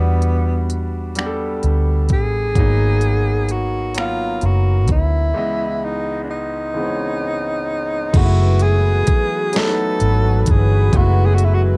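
A hazy home cassette recording with light reverb frames this yearning, late-night slow R&B fragment in 6/8 at 43 BPM, cut from a longer piece. A breathy, whispered tenor saxophone carries the melody up front, playing in a jazz style with vibrato, soft attacks and scooped notes. A clear grand piano accompanies with long sustain and audible action noise, while a dark, round, foam-muted electric bass sits up front beneath it. The produced electronic drum kit enters at 0.2 seconds with a knocking kick, deep snare, smooth hi-hats, finger snaps and crash cymbal, carrying a tape-softened character. The chords move through Em9, Abm9 and Dbm9, with a break from 5.3 to 8.1 seconds, and at 8.1 seconds a shimmering, detuned pulse-width pad enters with a slow attack in the background under a Gbm11 chord.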